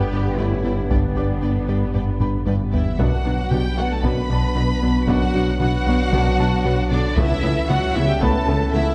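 A dark, warm production set in a moderate concert hall reverb carries this vast, relentless hybrid orchestral and electronic film cue in B minor at 115 BPM, cut from a longer piece and moving from G to Bm to Aadd9/C#. Lush bowed violins sing the vibrato-rich melody over a distant second violin line, while very quiet violas, cellos with expressive portamento, and double basses join shadowy French horns, smooth trombones, a shimmering retro pulse-width pad, a faint vintage grand piano, and a tight, driving sequenced synth arpeggio. Underneath, a gliding synth bass riff and a punchy sine sub bass anchor the low end, and a close, dry taiko ensemble with heavy sticks enters at 0.9 seconds, playing a fill from 2.2 to 3.0 seconds before the music shifts to a new section.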